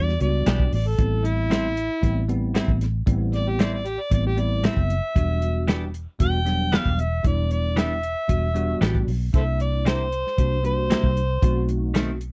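A dry, close 1970s-style studio sound frames this brooding, mournful soul blues excerpt with a straight-eighth feel. An amplified, gritty harmonica carries the melody as a jazz-style solo with light vibrato, scooped notes and tongue slaps. Beneath it sit a bell-like tine electric piano with ensemble chorus, compressed clean guitar stabs that enter at 0.5 seconds, a round, foam-muted fingered bass sitting up front, and a dark acoustic soul drum kit with a tight kick and rolled-off top, while the chords move from Em7 through Am7 and C7 to B7b9.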